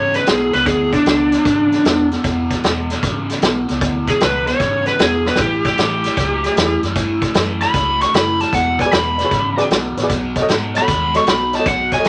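Electric blues shuffle in E mixolydian at 153 BPM, swinging and swaggering with a soulful edge in this short cut from a longer piece. Up front, a lead guitar through a small cranked amp carries the melody with a picked, overdriven bite, while a crunchy overdriven guitar drives the low riff through a phaser. Underneath, a vintage muted fingered electric bass sits dark and round, its foam-muted tone tucked low in the mix. The vintage drum kit of hi-hat, kick and snare sounds gritty and saturated, with a tight kick, a medium-tuned snare and a rolled-off top, and it drops in a fill at 5.2 seconds as the harmony moves from E7 to A9. A bright, reedy electric piano with fast tremolo enters at 8.8 seconds to add clean, direct accompaniment as the chords pass through E9 and B9, all set in a moderate studio reverb.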